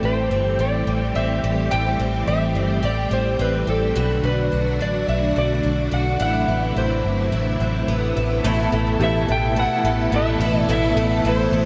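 A round, punchy, foam-muted electric bass sits up front in this melancholic, ethereal dream pop excerpt, under a dark, slightly broken-up slide guitar melody played with fingerpicks and washed in shimmer reverb and tape echo. A boxy, octave-doubled twelve-string acoustic picks arpeggios with audible finger squeak, while a vintage sawtooth string machine holds soft-attack violin chords through ensemble chorus and shimmer reverb, over chords moving from Am7 to Bm7 and Am69. At 8.4 seconds the harmony settles on Asus2 as a lo-fi electric guitar through a small old amp enters in the background with tremolo and lush chorus, and at 9.0 seconds a very quiet, crystalline FM synth bell adds a brief warbling note, the whole scene set in a lush digital hall.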